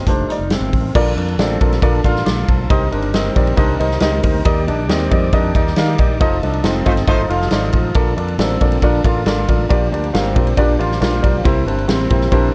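The recording is dry and dark-toned, with the drums and a mellow, woody upright piano sitting up front. This is a danceable, uptempo 1960s-style soul cut in Bb major at 137 BPM, moving in a straight 4/4 through a progression that begins on F7 and settles on Bbmaj7, Cm7 and Ebmaj7 before cycling on to Gm7 and C7. A swinging big-band drum kit drives it with a punchy kick, a medium-tuned snare, hi-hat, ride and crash, while a fingered electric bass adds a punchy low end. An electric guitar through a small old amp plays a twangy, slightly broken-up picked riff with subtle chorus, and an overdriven tonewheel organ holds gritty, thick chords with key click and chorus vibrato in the background. The band hits an accent from 6.2 to 8.0 seconds, where a tight, smooth-topped horn section slips in a brief second line between 6.9 and 7.2 seconds.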